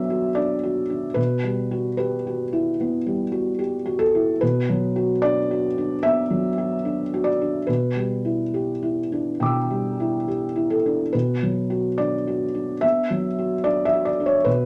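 A felt-muted upright piano plays alone from the first second, settling on B minor and then moving through Emadd9/B, back to Bm, G6/B and Bm again in this intimate, melancholic fragment of neoclassical minimalist piano. The 4/4 pulse sits loosely around 68-76 BPM with a rubato feel. The piano sounds dark and up front, its thick felt softening every note while the audible action noise adds closeness, all set in a short, wet studio ambience.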